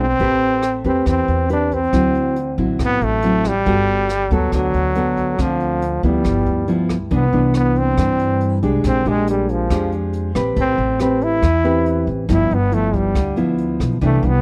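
A dry, close 1970s-style studio sound with small room reverb frames this sunny, romantic bossa nova excerpt, where a bright, forceful trombone up front carries the solo melody with vibrato and scooped notes over full-bodied, thumb-plucked nylon-string guitar chords moving from Am9 and D9 toward Cmaj9 and Bb13, a woody, thumpy pizzicato upright bass on gut strings, and a brushed drum kit with boomy kick, hi-hat and rim click that enters at 0.2 seconds.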